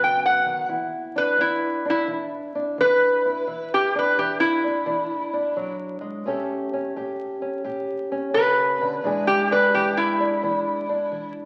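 Heard through the crackle of a very old 78 rpm record and a wet, large studio reverb, this short fragment of acoustic country blues has a gritty, swaggering mood. It moves at 86 BPM in 4/4 with a triplet swing on the eighth notes, set in E mixolydian and tuned slightly below standard pitch. A lap resonator guitar carries the melody up front, played with a steel bar and fingerpicks, and its bright, metallic, nasal slide tone takes a solo from 0.7 seconds to the end. Beneath it, a fingerpicked old ladder-braced acoustic guitar supplies the accompaniment, also up front but sitting lower in level, with a dark, woody, boxy sound from its old strings. The harmony starts on B7, settles into E7, moves to A7 and returns to E7.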